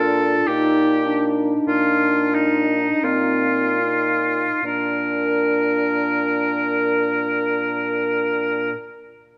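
An oboe, clarinet, French horn and bassoon sound together from the opening of this brief cut from a lyrical classical slow movement for wind quintet, moving in a flexible, rubato triple metre that slows through the first 4.7 seconds. The clear oboe sits up front with a light vibrato as the second line, the dark clarinet stays in the background, the horn adds a warm, smooth-topped accompaniment, and the mellow, punchy bassoon holds a low bass note from a distance. The harmony moves from Bbadd11 to a plain Bb at 4.7 seconds, set in a moderate scoring-stage reverb with a 2.0 s decay.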